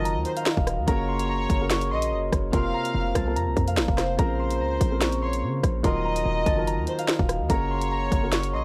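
This is a short drill cut at 145 BPM in 4/4, with a half-time feel. The up-front electronic drum kit hits with a hard-clipped kick and a sharp snare, along with warm hats, rim clicks and finger snaps. Underneath, a punchy, heavy 808-style bass with a sine body and a noise layer decays after each fast attack, ranging from Eb1 to Db3. A fingerpicked, ringing concert harp carries the melody high in its register through an analog delay, while a bowed violin section with light vibrato and a gut-string, period-style tone adds a second line, also through analog delay. A mellow vintage grand piano with audible action noise plays the accompaniment, and a glass harmonica sits in the background holding ethereal, beating chords with a slow attack over a dark, cold progression that opens on Ebmadd9 and moves through Gb, Fsus4 and Bbmadd9. The sound is dry and gritty, with little reverb, giving the piece a stark, close presence.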